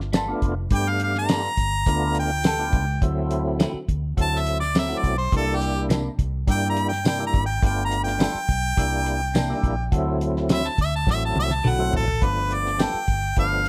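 A cloth-damped, thuddy drum kit with a fat snare and a round, foam-muted fingered bass opens this swaggering, rollicking soul blues, cut from a longer piece, soon joined by twangy, phaser-tinged clean guitar stabs, a lightly overdriven tonewheel organ with key click and slow rotary speaker, and, from 0.7 seconds, an up-front, overdriven harmonica solo full of scooped notes and light vibrato, before a drum fill at 11.1 seconds leads into a new section at 12.2 seconds.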